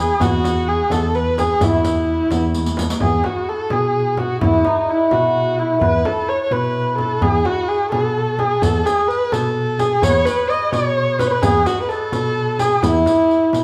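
A large studio reverb surrounds this live ensemble, giving the room a lush, spacious glow around players who sound as if they share one space. It is a festive Persian modal piece in E dastgah mahur, moving at 86 beats per minute in a straight-felt 6/8 and tuned to A4 = 435 Hz. Up front, a single dark, woody kamancheh carries the bowed melody with vibrato and portamento, while a bright, shimmering santur rings out a second line in the same register behind it. A clean, bell-like tine electric piano holds the bass, sitting direct and up front in the mix. A small, hard-handed frame drum keeps time from the background, joined by a riq whose soft-handed, band-limited jingles have a vintage tinge; the riq drops out after a drum fill that ends at 3.0 seconds and returns at 8.6 seconds. The whole passage is cut from a longer, warm-spirited performance.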